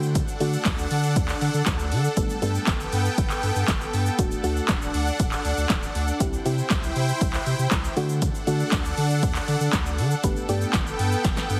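A punchy analog drum machine sits up front with tape-warm kick, snare, claps, hi-hat and shaker in this carefree, euphoric dance-pop excerpt at 119 BPM in D mixolydian, where a lush, detuned supersaw pad, a deep saturated sub bass and a soft, round chorused pluck all pump against the sidechain over D, Gadd9 and C chords, a very quiet grainy egg shaker adds texture, the whole mix has a heavily compressed radio sound, and a drum fill arrives at 11.2 seconds.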